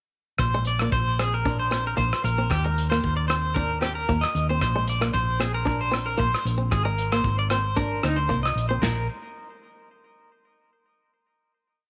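A lightly swung 4/4 groove at 114 BPM drives this short, carefree highlife guitar band piece in Bb mixolydian. A warm soul drum kit in a small room, with dark cymbals, a tight kick, rim clicks and toms, sits under a round hollow-body electric bass playing a dotted figure. Up front, a twangy electric guitar at the edge of break-up spins an arpeggiated ostinato through tremolo and tape echo, while a boxy, picked acoustic guitar adds a swing ostinato of its own as the chords move through Bbadd9, Eb and Ab; the groove runs from 0.4 s to 8.8 s before a final chord closes the piece in light studio reverb.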